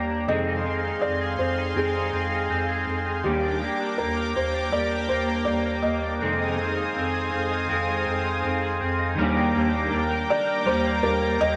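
A mellow bass clarinet sits up front with a jazz-style voice, its low notes carrying vibrato and scoops under a smooth top as it holds down the bass in this blissful, dreamy dream pop excerpt cut from a longer piece. Above it, a lush, thick pad of detuned sawtooth voices in unison warbles with a vintage chorus, its bright chords swelling in on a slow attack and lingering on a long release. A felt-muted upright piano carries the melody, soft and intimate, with a delay trailing its notes. Two electric guitars fill the middle: a dark, fingered one plays accompaniment through tremolo and ensemble chorus, while a clean, twangy one picks arpeggios through analog chorus and delay. The harmony moves between Fm7 and Ebmaj7, shifting into a new section at 9.2 seconds, and the whole mix sits in a huge, wet ambient reverb that lets each sound hang long after it is played.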